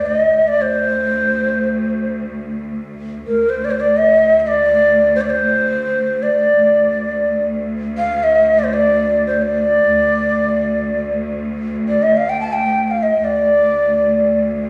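In free time, this soulful, melancholic Persian modal ensemble piece in D dastgah shur, tuned to A4 = 439 Hz, is cut from a longer work. An end-blown reed-cane ney sits up front with the melody between Bb4 and A5, breathy and crisp in attack with vibrato, until 14.4 s, while a bright, lush bowed cello section holds an intense drone on D2 with vibrato through 14.7 s. A wet recital hall reverb, heard from further back in the room, blends with studio ambience around them.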